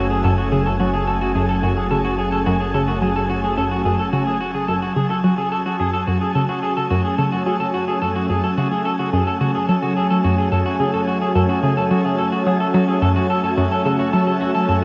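A bright, airy sawtooth pad sustains an F#madd9 chord beside a slightly broken-up, lo-fi electric guitar playing fingered arpeggios through a small old amp with tape echo, while a warbling pulse-wave analog drone holds the bass until 4.4 s and a round, detuned analog pluck riff enters at 0.2 s, all set inside a long, wet shimmer reverb in this mysterious, hypnotic excerpt of sequencer-driven ambient space music at 108 BPM in F# minor.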